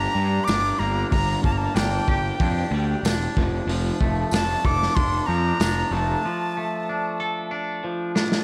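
Psychedelic rock with a hypnotic, trippy mood, where a breathy, bright flute carries the melody through tape echo over a twangy, phased guitar riff and an overdriven fuzz bass, while a crunchy, gritty breakbeat kit with a punchy kick enters at 0.5 seconds alongside a jingly tambourine in the background, and a break from 6.2 seconds closes on a drum fill at 8.2 seconds in an echo-heavy studio reverb.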